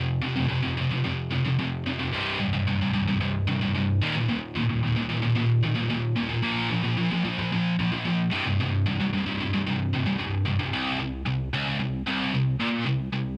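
A straight 4/4 metal pulse drives this heavy, relentless fragment cut from a longer piece, where a lone scooped, high-gain electric guitar, bright, distorted, picked and double-tracked, sits up front on a cassette home recording with light reverb, picking through power chords from F5 to C5, Eb5, Bb5 and back to C5 before the chords drop away at 10.7 seconds, and it stops at 13.3 seconds.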